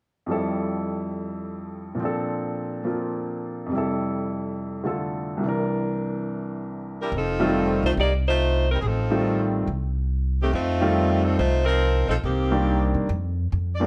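A smooth-topped saxophone section carries the melody with light vibrato from 7.0 s in this brassy, energetic big band swing excerpt at 141 BPM, following an intimate baby grand piano that comps alone from 0.3 s with audible action noise and long sustain over an F major progression, before a woody, thumpy pizzicato upright bass joins at 7.1 s as the harmony turns F mixolydian, all set in a moderate large studio reverb.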